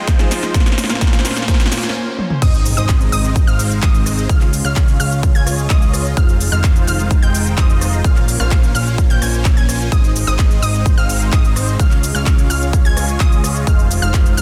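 This is a dense, heavily limited modern master with little reverb, carrying a triumphant, uplifting slice of festival progressive house cut from a longer piece. It opens on a short build-up in which a huge, detuned supersaw riff treated with phaser, analog chorus and dub echo rides over a lush, slow-attack pad in the background. A boxy baby grand piano sounds briefly until 1.8 seconds, while a very quiet riser and noise sweep rise under a drum fill and a brief break. The drop arrives at 2.4 seconds with a faint impact, bringing in a fat, saturated analog bass and a bright, ring-modulated unison pluck playing high arpeggios with dub echo, as the harmony cycles through Ab, Db, Fm7 and Bbmadd9. An up-front, punchy electronic kick anchors a straight 4/4 groove, joined by a tape-tinged big-room kit of crisp hi-hats, snare, handclaps, rim clicks, toms, cabasa and crash cymbal. Sidechain pumping makes the pad, supersaw, piano, pluck and bass breathe together.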